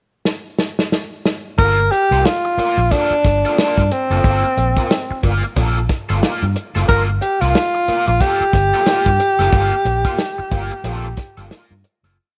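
Funk with a driving, sly mood and a swung sixteenth-note lilt, this whole piece opens with a drum fill from the soul kit at 0.3 seconds before the full groove settles onto a single Gm9 chord at 1.6 seconds. The acoustic kit sits up front yet keeps a distant, roomy character, its medium-tuned snare, tight kick and hi-hat driving a sixteenth-note funk groove. A dark, round, foam-muted electric bass, thickened by transformer saturation, plays a syncopated riff anchored on the downbeat, with muted ghost notes and chromatic approach notes. Lower in the mix, an overdriven, picked semi-hollow guitar adds sixteenth-note rhythm figures and muted scratches through a wah. Out front, a breathy, whispered tenor saxophone delivers intimate, pop-style call phrases built on short motifs, with vibrato, soft attacks and scooped notes, all within a light small-room reverb until the fade-out begins at 9.5 seconds.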